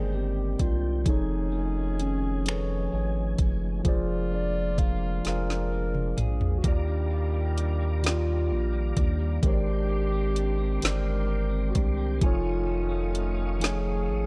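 A hollow, woody clarinet-like synth lead with chorus carries this sensual, slow six-eight R&B passage in Eb major at 43 BPM, playing a soft solo over mellow tine electric piano, a round, deep analog bass, a tonewheel organ with key click and slow rotary swirl, and a slightly broken-up guitar set back in spring reverb and digital delay. An up-front electronic kit with a knocking kick, woody snare, finger snaps and tape-warm hats enters at 0.6 seconds, clear, punchy horn stabs follow in the background, and a drum fill leads into the second section at 6.6 seconds. Lush chords such as Abmaj9#11 and F7alt drift by in a dark, close production with little reverb, in a fragment cut from a longer piece.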